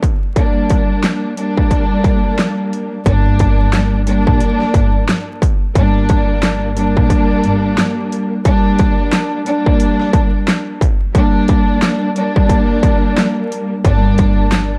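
Boom-bap hip-hop at 89 BPM in G minor with a moody, gritty swing, built on an up-front, layered electronic dubstep kit of distorted kick, huge snare, bright hats and handclaps, set against a dark, lush bowed string section with vibrato and a low-pass filter, while a woody pizzicato upright bass enters at 3.1 s and returns at 13.8 s, all wrapped in a dark, warm, vinyl-crackled studio ambience.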